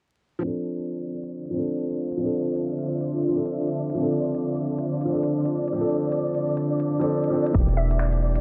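A dry, gritty hardware sound with vinyl crackle and a filter sweep frames this rainy, wistful future garage fragment at 135 BPM in D minor: a woody, intimate upright piano with tape echo and an ethereal pad with phaser and sampler grit pump over Dm7, a flickering granular texture sits in the background, and overdriven finger snaps and hi-hat carry a 16th-note swing, until at 7.5 seconds a tight electronic kick and a deep, round 808-style bass arrive with the move to Em7b5, followed briefly at 7.8 seconds by a glassy wavetable pluck.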